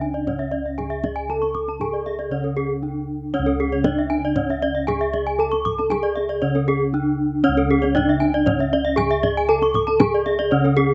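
Set at a steady 117 BPM in straight 4/4, this Balinese gamelan excerpt in C# pelog has a hypnotic, shimmering mood. A bronze metallophone carries the melody in the middle register, struck with a wooden mallet and sitting up front, its paired tuning producing ringing, beating tones. Two more bronze metallophones, played with horn mallets, weave arpeggios above it: one is airy and touched by a slapback echo, while the other is close-miked, dry and full, extending up to D6+35c. Underneath, bossed gongs struck with padded beaters give a round, dark and mellow bass, and a kendang adds deep, dry percussion played with soft hands. Recorded outdoors with light reverb and a soft top end, the passage repeats its opening section from 3.3 seconds and is cut from a longer piece.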